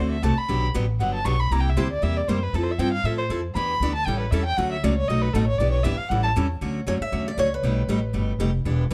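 A brisk swung four-four drives this lively, playful excerpt of acoustic string swing, with a woody, thumpy pizzicato upright bass and a bright picked steel-string guitar up front in accompaniment throughout. A bowed violin with a nasal, reedy gut-string tone and light vibrato takes a period-style solo until 6.3 seconds over a chain of seventh chords. A second picked guitar with fresh strings and audible finger squeak then carries a short melody from 6.9 seconds, all set in light reverb with a dark production.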